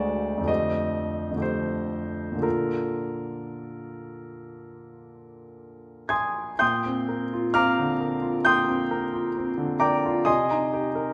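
A clear, intimate grand piano opens this slow, rubato passage of impressionist solo classical music, its luminous, hazy mood drawn from lush extended harmonies such as F13, Bbmaj7 and Bb69, spanning from D2 up to Ab6. The piano sits up front with a natural tone, long sustain and audible action noise, set in a wet recital hall reverb of 1.6 seconds. The same opening idea returns at 6.6 seconds and settles onto a Cm7 near 10.3 seconds before the passage, cut from a longer piece, breaks off at 11.1 seconds.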